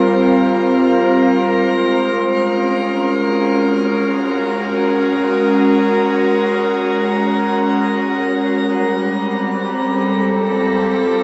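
Free-time and serene, this spacious ambient fragment from a longer piece features a lone evolving wavetable pad, bright, detuned and up front, with slow attacks and long releases, colored by chorus, built-in reverb and tape echo, drifting from Gm7 to F# before settling on G9sus4 at 8.7 s, all bathed in a long shimmer reverb and the warbling pitch drift of worn cassette tape.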